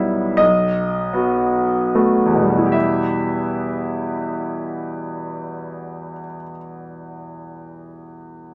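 Yearning and melancholic, this brief excerpt of a romantic classical nocturne for solo piano sits in E minor at a slow 26 BPM in dotted quarters, its 6/8 lilt pulled about with rubato and slowing through the opening 2.7 seconds. A clear, open grand piano sits up front with long sustain, ranging from B1 to E5 in a moderate studio reverb, moving from a B7 chord at 0.4 seconds to settle on E minor at 2.7 seconds. The piano plays for the whole excerpt, which is cut from a longer piece and ends at 8.5 seconds.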